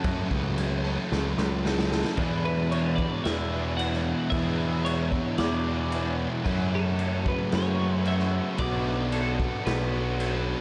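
A growly, overdriven picked electric bass sits up front in this wistful, dreamy shoegaze and dream pop excerpt, moving at 112 BPM in a straight 4/4 in E mixolydian. Beneath it, a raw garage drum kit with a punchy kick, a medium-tuned snare and crash cymbal sounds dark and rolled-off, as if played in a small room, and a drum fill leads into the next section at 2.2 seconds. From the start, an overdriven electric guitar washed in reverse reverb and a thick fuzz guitar with subtle chorus churn out riffs in the background. A second, double-tracked overdriven guitar with ensemble chorus joins at 2.2 seconds. A bright, twangy twelve-string electric guitar carries a clean, compressed melody from 2.5 seconds, trailing a diffuse ambient delay. The whole mix is soaked in a cathedral-like reverb, while the chords drift from F#m through E7 and F#m7 to Bm7.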